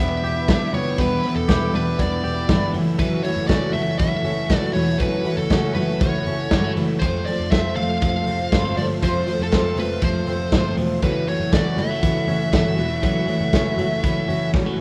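A rough home-demo mix bathed in studio reverb gives this restless, bittersweet slice of jangly indie pop at 120 BPM a loose, close-up feel. A raw garage drum kit sits up front, its gritty, saturated sound coming from a bright stone room with a tight kick, medium-tuned snare, hi-hat and ride, entering at 0.2 seconds and closing with a fill at 14.5 seconds. Underneath, a vintage foam-muted picked electric bass stays low and round, while a twangy, compressed clean electric guitar runs arpeggios. In the background, a fingerpicked jumbo twelve-string acoustic adds full-bodied, octave-doubled accompaniment, and a sawtooth string machine set to violins holds slow-attack chords through an ensemble chorus. On top, a dark fuzz lead guitar carries the melody through distortion and tape echo as the chords drift from Em7 through F#m7 and F before returning to F#m7.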